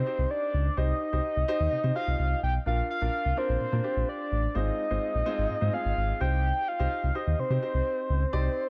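A deep, sine-based sub bass with an added octave, a polished baby grand piano and a round, triangle-toned synth lead layered with a sub octave, wave-folded and touched by chorus, vibrato and delay begin together in this confident yet bittersweet dance-pop excerpt in straight 4/4, the lead carrying the melody up front over the piano's present accompaniment as the harmony moves from Cm to Bb and Fm7/Ab, then back to Cm, within a small room ambience.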